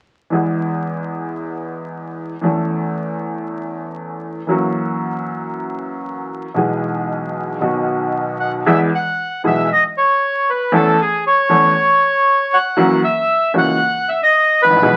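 A woody, slightly detuned upright piano with audible action noise opens this nostalgic, passionate tango at 0.3 s in a loose rubato feel, before a reedy bandoneon enters up front with the melody at 8.4 s, both set in a moderate club reverb beneath the crackle of a very old 78 rpm record in an excerpt cut from a longer piece.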